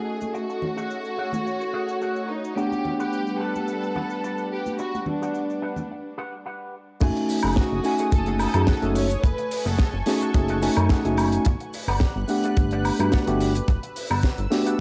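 Nu-disco with a sensual, sleek mood, this is cut from a longer piece and has the character of a home recording on cassette, set in a moderate spring reverb. A clean tine electric piano plays the accompaniment through its built-in speakers under a filter sweep, while a lush, detuned sawtooth unison pad holds slow-attack chords with chorus, 12-bit sampler grit and sidechain pumping. A bowed symphonic violin section carries a smooth melody with light vibrato until 11.1 seconds, and a twangy, scooped electric guitar plays a picked riff through an envelope filter and analog chorus. Cabasa, congas and bongos from a small room add percussion until a break at 5.9 seconds. The drop at 7.0 seconds brings in a dry, tight kick up front, a funk kit with bright cymbals, woodblock and a high-tuned snare, and a glossy, nasal synth bass built from pulse and sawtooth waves, with sidechain pumping.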